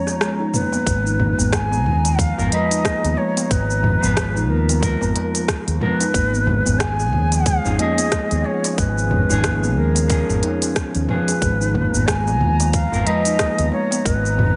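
A loose 16th-note swing at 91 BPM in 4/4 carries this earthy organic downtempo excerpt in G# dorian, where an overdriven electronic kit with crisp hats, rim click, shaker and toms sits over a tight kick that joins at 0.9 seconds alongside a round, dark fretless bass, while a clay-shelled darbuka murmurs deep in the background. Up front, a breathy, reedy ney carries the melody with vibrato and tape echo, over ringing steel tongue drum arpeggios struck with rubber mallets and a warbling, nostalgic lo-fi pad that pumps behind everything. A clean, fingered electric guitar bathed in spring reverb adds accompaniment from 2.4 seconds as the harmony moves between G#m69 and C#/G#.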